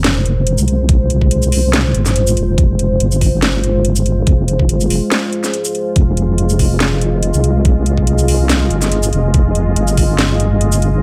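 A deep, wobbling sawtooth bass and a tape-warm garage kit of cracking snare, metallic hi-hats and shaker open this heavy, dark deep dubstep cut in F minor at 142 BPM, with a swung half-time feel. A moody, full-bodied pad of detuned unison chords with a sub octave, chorus and built-in reverb swells in slowly beneath them on a single F minor chord, and a knocking electronic kick joins up front at 0.9 seconds. The compressed, chorused bass sits up front, with the pad further back in a digital ambience throughout this short section of a longer piece.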